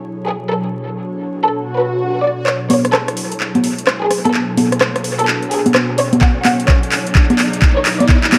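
Moody and bouncy, this 128 BPM two-step UK garage excerpt in F# minor opens on an ethereal, detuned pad with chorus and sidechain pumping under a lush, vibrato-rich violin section trailing dub echo, as a background swell arrives at 1.6 seconds before an overdriven garage kit of congas, handclaps, metallic hats and rim clicks enters up front at 2.5 seconds into a fill-driven build-up with a riser, joined by a knocking electronic kick at 6.2 seconds, all over Bm7 and F#m7 chords in an echo-heavy, crackling mix with spring reverb.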